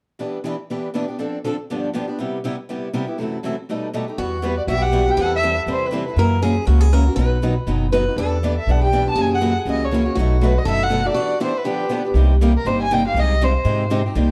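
Acoustic string swing in the jazz manouche style, this swinging, virtuosic passage is cut from a longer piece and moves at a brisk clip. A picked steel-string acoustic guitar and a picked swing-style acoustic guitar open together at 0.2 s, laying down boxy, bright chordal accompaniment through seventh and altered harmonies. At 4.2 s an upright bass enters up front with a woody, growly pizzicato tone, joined by a second steel-string guitar carrying a higher line with a bright, boxy parlour character. A dark bowed violin takes the melody from 4.5 s, expressive with vibrato and portamento and set forward, its sound trailed by plate reverb and tape echo. A brief break arrives late in the passage before a closing section shifts into minor and major seventh colours, all within a moderate room and a warm, dark production.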